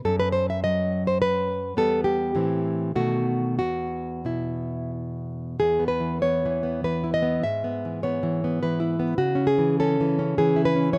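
In a rubato 3/4 that drifts between 88 and 107 BPM, this wistful, passionate romantic excerpt for solo classical guitar features a fingerpicked nylon-string guitar, up front with fresh strings, a warm tone, a slapback echo and light reverb in an outdoor recording, ranging from E2 to E5 as it moves from E minor through Em, Am and B7 before brightening into E major at 5.6 seconds.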